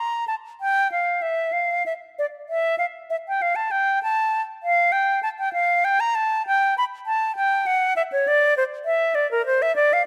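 In a rubato 12/8 lilt at about 66 dotted-quarter beats per minute, this radiant, serene baroque-style classical fantasia for unaccompanied flute places a silver concert flute up front, its airy, metallic tone, soft attacks and vibrato ranging from Bb4 to B5 and caught by close, detailed microphones in light reverb across a 10.1-second fragment of a longer piece.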